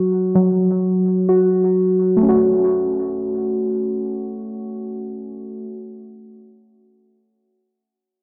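In free time, this brooding yet hard-hitting hip hop excerpt in F# minor sets muted, felt-like synth keys playing dark, intimate arpeggios between F#3 and F#4 up front from 0.0 to 5.8 seconds, shaded by chorus, a low-pass filter and tape echo, moving from a chordless opening into F# minor at 2.2 seconds, all bathed in a dreamy, filtered mix soaked in a plate reverb with a 1.7-second tail.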